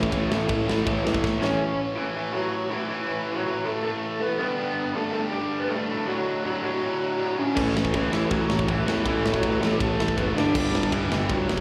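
Punk rock at 161 BPM, rebellious and upbeat, cut from a longer piece and heard as a live gig through the venue's PA with small-room ambience and hall reverb: a bright, up-front overdriven guitar riffs throughout with slapback echo, opening alongside a very quiet double-tracked fuzz guitar, a sludgy background guitar, a growly fuzz bass and a tight metal drum kit whose fill hands off to that lone riff and a lo-fi lead guitar through a small cranked amp from 1.4 s, before the rest of the band returns around 7.5 s over A5 and G5 chords.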